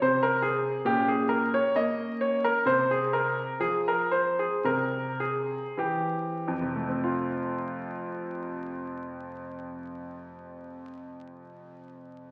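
A lone grand piano opens this grave, flowing baroque-style suite movement, its clear, present tone placed up front with long sustain, spanning F2 to Eb5. The tempo moves freely in 4/4 between 46 and 72 BPM with a rubato feel, and the music slows down through the first 7.0 seconds as the harmony moves from unaccompanied opening notes through B-flat minor with an added eleventh, an F power chord over C, and C major. At 7.0 seconds a new section begins on F, carrying the solemn mood forward until the piano stops at 12.3 seconds. A wet recital hall reverb surrounds the instrument, and the sound carries the crackle of a very old 78 rpm record. The passage is cut from a longer piece.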